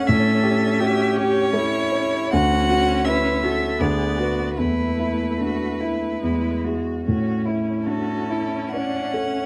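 A dark, softly reverberant production frames this tender, serene excerpt from a slow romantic piano-quartet movement in A major and 3/4, drifting with rubato at roughly 66-84 BPM, where a rich, smooth violin sings the melody up front with light vibrato over an even, distant cello second line, a focused viola set back in the room and a mellow grand piano with short sustain, the harmony moving from A7 through Dmaj7 and Esus4 before settling on A at 7.1 seconds.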